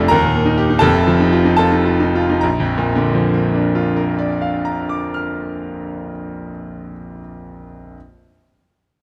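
Captured by close, detailed microphones in a recital hall with a moderate 1.4-second reverb, this brilliant, sparkling excerpt of a classical virtuoso piano study in B-flat major and 6/8 features a bright, up-front solo grand piano spanning F1 to F6 at a rubato 68-86 BPM, slowing down through its opening 2.4 seconds over Eb and F7 harmonies before arriving on Bb as a new section begins.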